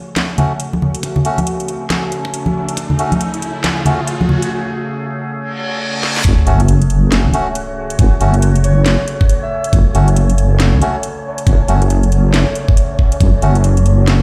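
Deep dubstep at 138 BPM in F# minor, with a half-time, swung feel and a cavernous, heavy mood, heard as a cut from a longer piece. An overtone-sweeping drone holds sustained F# minor chords throughout, its ring-modulated, resonant tone treated with chorus. Bright, close and dry congas with dub echo open alongside a garage drum kit of cracking snare and metallic hats. Reedy, nasal melodica stabs drift through a low-pass filter and dub echo. A knocking electronic kick sits up front. A riser, reverse cymbal and sub drop build to the drop at 6.2 seconds, where a deep, soft wobble bass enters with chorus. A dark, wind-like tuned noise texture and a brief breathy, flute-like synth lead with vibrato and dub echo float in the background. The whole mix rings with a light stone room reverb, as if played on a big sound system in a bare room.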